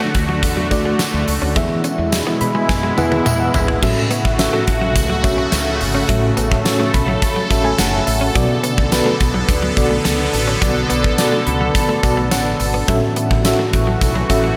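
Romantic and nostalgic, this short excerpt from a longer 1980s-style pop piece moves at 106 BPM in a straight 4/4 in A major, its dreamy mix soaked in a huge ambient reverb. An up-front FM electric piano with tremolo carries the accompaniment with a dark, fast-attack tone and a noise layer, adding fills around 2.1, 6.7 and 11.2 seconds. Beneath it, a sweeping resonant pad holds sustained chords with a detuned sawtooth shimmer, slow attack, filter swell and chorus, while a very quiet, clean electric guitar recorded direct picks a compressed riff. A woody fretless bass with a round, hollow-body character and ensemble chorus anchors the low end, and a gated 80s drum kit with a fat snare, tight kick and bright cymbals sits up front, playing a fill just before the second section begins at 3.8 seconds. A jingly, close and dry tambourine adds a faint sparkle as the harmony drifts from D and E to A6, Bm7 and F#m7.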